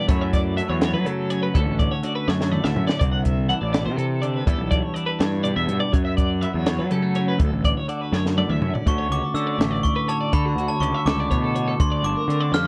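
A glockenspiel played with brass mallets stands out once it enters at 8.9 seconds, carrying a bell-like, sparkling melody high above the band with a slapback echo. Before that, this playful, intricate excerpt of math rock and midwest emo moves at 82 BPM in a straight 6/8 in D major, with one twelve-string electric guitar picking chords in the low and middle range while a second twelve-string, twangy and treated with tremolo, spins arpeggios above it. Both guitars are clean, bright and compressed, and a fuzz picked electric bass sits up front with a round, overdriven tone. A compact cocktail drum kit with a high-tuned snare, punchy kick and rolled-off top covers hi-hat, snare, kick and toms, adding fills at 2.3 and 8.1 seconds. The chords move through F#m7, Dmaj7, C69 and Em7 before turning to Bb69 near the end, all captured in a dry, close 1970s-style studio sound.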